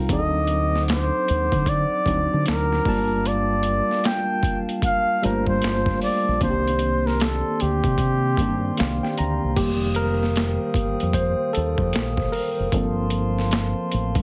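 Heavily compressed with a radio-like sheen and moderate studio reverb, this introspective, smooth neo-soul R&B excerpt sets a breathy, whispered flugelhorn melody with slapback echo, running until 9.2 seconds, over a worn, slightly out-of-tune tine electric piano, ethereal glass harmonica chords, a round, dark fingered dub bass and a gritty, overdriven boom bap sampler-style drum kit of thumpy kick, high-tuned snare, handclaps, hi-hat and crash, before the electric piano takes a solo from 9.6 seconds.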